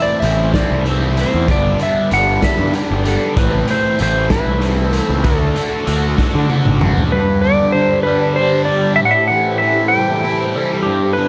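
The clean lap steel guitar carries the melody in slide lines with volume swells and tape echo, riding over a cranked, double-tracked stack guitar riff thick with overdrive and phaser, in a dark, trippy psychedelic rock excerpt at a slow 64 BPM in 6/8, A dorian. A fuzzed, punchy picked bass and a gritty, saturated garage drum kit drive the groove until the drums close with a fill running from 6.2 to 7.1 seconds, leaving the guitars and a silky, chorused string machine pad, which sits in the background, to carry the chords from G through Am7. Light reverb and small room ambience give the whole a close, raw feel.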